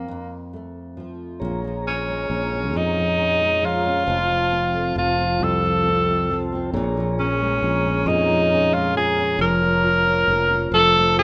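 A clear, up-front tenor saxophone carries a dramatic, melancholic melody with light vibrato and scooped notes over a double-tracked, fingerpicked nylon-string guitar in this six-eight pop ballad, joined at 1.4 seconds by a mellow, flute-like tonewheel organ through a slow rotary speaker and a round fretless electric bass, set in plate reverb within a rough home demo mix.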